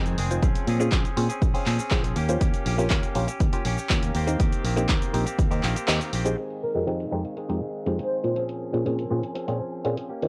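Funky and sensual, this filtered disco house cut at 121 BPM rides on an up-front, punchy electronic kick and an analog drum machine of hi-hat, handclaps, cabasa and crash cymbal. A warm fingered electric bass, a stringy muted clav with phaser and 12-bit sampler grit, and a bright, twangy clean electric guitar riff pump under sidechain and low-pass filtering, with cassette tape coloring the clav and guitar. The kick drops out at 5.9 s on a band accent, then a very quiet, lush bowed violin section enters at 6.4 s as a filter sweep moves over the drums, and a fat, warbling analog synth brass melody with chorus arrives at 6.6 s, all set in light reverb with a lo-fi home cassette character.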